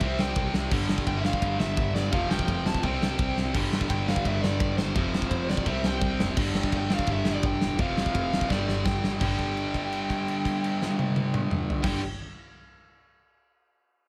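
A big, dark rock drum kit with a punchy kick sits up front in this rowdy, rebellious punk rock excerpt at 169 BPM, firing fills at 3.4 s and from 8.5 s. Meanwhile, a focused, bowed double bass with vibrato plays close beneath, and three bright, picked rhythm guitars churn riffs: a cranked stack and another in the background, plus a third, double-tracked, compressed and very quiet. A warm, overdriven lead guitar carries the melody over C5, G5 and F5 chords, and the excerpt moves into a held note from 9.2 s.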